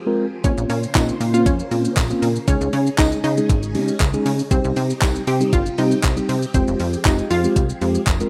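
Confident and energetic, this short dance-pop clip at 118 BPM in Bb dorian sets a hollow, bouncy square-wave pluck melody with chorus over mellow tine electric piano, a swirling phased string machine in the background, a punchy, funky analog bass and the sidechain pumping shared by those three, while a crisp, thumpy 8-bit drum machine of kick, handclaps, hi-hat and shaker sits up front, a very quiet jingly tambourine joins at 1.0 seconds, and the rough home-demo mix carries light reverb over chords moving from Bbmadd9 through Dbsus2 and Cm to Fmadd9.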